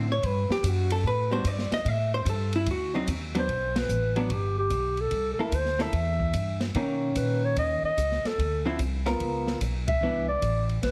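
Small-group jazz in a swing-and-bop vein, this short excerpt moves at 147 BPM in 4/4 with swung eighths and a sophisticated, swinging mood. An electric hollow-body guitar plays clean, picked, compressed accompaniment up front, while a pizzicato upright bass with a woody, steel-string tone anchors the low end and a small-room drum kit adds ride, hi-hat, a medium-tuned snare and a boomy kick under a rolled-off top. At 3.4 seconds a dark clarinet takes the solo melody, its subtone vintage in flavor, colored by light vibrato and scooped notes. The band hits accents at 3.7 and 9.8 seconds as the harmony travels from Gmaj7 through rich extended chords such as C13, Bmaj9 and Dm9 before settling on Cmaj9. Light reverb and a heavily squeezed, radio-like multiband compression give the whole a compact, old-broadcast character.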